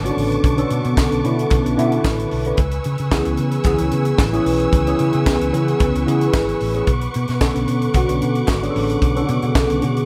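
Lightly reverberant, this driving, danceable disco cut at 112 BPM in B dorian moves from Bm9 to C#m7 at 2.6 s and back to Bm9 at 6.9 s. A worn, slightly out-of-tune tine electric piano with phaser sits up front with a tight funk drum kit, its high-tuned snare and tight kick sounding natural in a small room, while a round, dark hollow-body short-scale bass plays fingered lines underneath. Behind them, a lush symphonic string section holds bowed chords with expressive vibrato and a smooth top, and a hollow, very quiet group handclap enters at 1.0 s.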